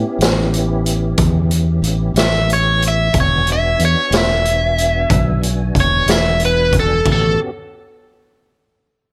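A tonewheel organ opens this laid-back, soulful slow blues in a straight 12/8 feel, holding clear, clean chords through a slow rotary speaker with chorus vibrato and a touch of key click. A fingered electric bass sounds from the start as well, round and punchy, sitting up front beneath the organ, which rests further back in the mix. A raw garage drum kit joins at 0.2 seconds with crash cymbal, hi-hat, kick and snare, its small-room sound gritty and saturated, with a boomy kick, a medium-tuned snare and a rolled-off top. At 2.2 seconds a biting overdriven guitar takes the melody, picked and up front, carrying the solo as the harmony moves from A7 to E7. Light reverb gives the short excerpt a little space before it reaches an A13 chord near its end.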